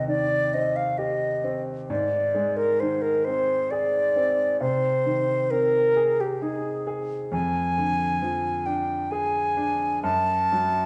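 Classical romantic duo in a yearning, elegiac mood at 66 BPM in a rubato 3/4, where an airy, metallic silver concert flute with a straight, tongued tone carries the melody between G4 and A5, up front over a clear grand piano whose open, long-sustaining accompaniment spans Eb2 to Ab4, as the harmony moves from Cm/Eb through Ab and Ddim/F to F#m at 10.0 seconds, all within a moderate recital hall reverb in this brief excerpt cut from a longer piece.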